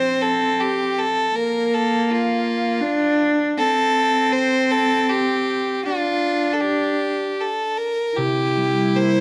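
Light reverb and close, detailed microphones give this brief passage from a longer piece an intimate, finely etched sound. It is a tender, wistful Celtic slow air in 3/4, played with a free, rubato feel. A single bowed fiddle sits up front with the melody throughout, its tone clear and smooth with a light vibrato. Beneath it, a solo cello carries a second line for the whole passage, its reedy, gut-string tone evoking a period style. A concert harp adds fingerpicked, ringing accompaniment only briefly, at the very start and again from 8.2 seconds, when a C7 chord arrives to round off the phrase.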